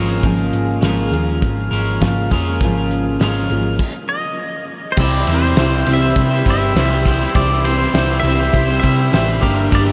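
A dreamy mix soaked in a huge ambient reverb frames this nostalgic, jangly slice of folk rock and heartland rock, moving at a straight 101 BPM in 4/4. A full-bodied picked dreadnought acoustic guitar and a twangy, slightly broken-up electric guitar riff, bathed in lush chorus, open over a Db6/Ab chord. Beneath them sit a round, dark hollow-body bass played up front and a cloth-damped, thuddy kit with a fat snare, tight kick and dark, rolled-off cymbals. After a stop at 3.8 seconds, a clean, compressed pedal steel guitar enters at 4.1 seconds with a slide melody. It is played with fingerpicks and volume swells, and carries subtle chorus and diffuse ambient delay. At 5.0 seconds the harmony settles on C as a very quiet, barky reed electric piano with fast tremolo and a jingly, close tambourine in the background join the warm blend.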